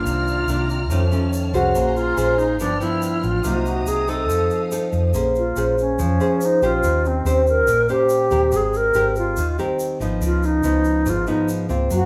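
A straight 4/4 bossa nova pulse at 142 BPM in Bb minor carries this wistful, smooth fragment, where a bright, reedy alto flute leads up front over fingerpicked, full-bodied nylon-string guitar, a round, hollow-body electric bass and a grainy egg shaker, while a lush bowed string section holds sustained chords until 5.1 s, when the flute takes a solo through 12.1 s over chords moving from Bbm9 through Eb6 and Abmaj9 to Db9, all in a moderate large-room reverb with the band playing live together.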